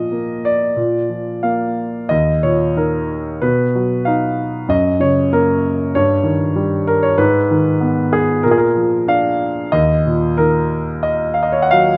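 A grand piano, warm, natural and up front in light reverb, plays alone from the start in this bittersweet, moody passage of lyrical classical music, drifting in rubato with uneven beats across a span from Eb2 to Gb5 and passing through a suspended opening and a B major chord before settling on a minor chord at 9.7 seconds.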